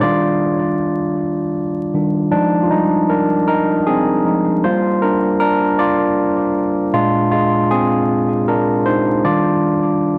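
R&B in a slow, straight 6/8 at 52 BPM, this yearning, late-night fragment of a longer piece features a lone overdriven tine electric piano playing solo from 0.0 to 10.2 seconds. Its barky, gritty tone comes through a combo amp, sits up front and trails an analog delay, moving through Ebmaj9, Fm9, Gm7 and Bb7 before settling back on Ebmaj9. The dry hardware recording carries light reverb and a bed of vinyl crackle.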